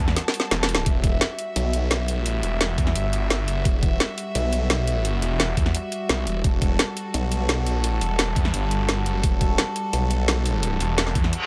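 Tense and dark, this excerpt of technical drum and bass opens on a rich, earthy chamber string section holding sustained chords that pump under the sidechain alongside a snarling, growling distorted saw bass with tube saturation, while an overdriven drum kit with a woody snare and bright hats plays a fill from 0.2 seconds before a knocking electronic kick joins at the drop at 0.9 seconds, and a reverse cymbal closes the passage at 11.3 seconds in light reverb.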